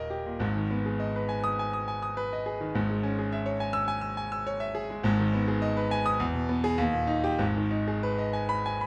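Closely miked with light reverb, a brilliant concert grand piano sits up front, its deep bass and smooth, vintage tone caught in fine detail. This agitated, passionate virtuoso piano study in G# minor moves at about 103 BPM in 4/4, with uneven beats and free rubato, tuned to A4 = 441 Hz. The solo piano spans D#1 to E6 across the 8.9-second fragment of a longer piece, its harmony moving from G# minor through C# minor over G#, then E and D# before settling back on G# minor at 7.4 seconds.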